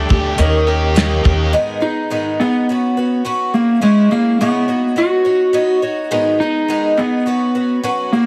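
Reflective and dusty, this short cut from a longer folk rock and heartland rock piece moves at 105 BPM in a straight 4/4, set in G# minor. It opens with a brief full-band burst: a clear upright piano with audible action noise sits in the background, a very quiet tonewheel organ holds smooth chords with key click, a bright double-tracked overdriven electric guitar plays a riff, and a woody, thumpy upright bass sits up front under a cloth-damped drum kit with a tight kick and rolled-off top. That group stops by 1.5 seconds, leaving the picked twelve-string acoustic guitar, boxy and shimmering with octave doubling and finger squeak, to carry on to the end. At 1.8 seconds a dark, slightly broken-up electric slide guitar takes the melody up front, moving through G#m, F#sus4, C#m and Badd9 before returning to G#m and F#sus4. The sound is heavily compressed like a radio broadcast, with light reverb.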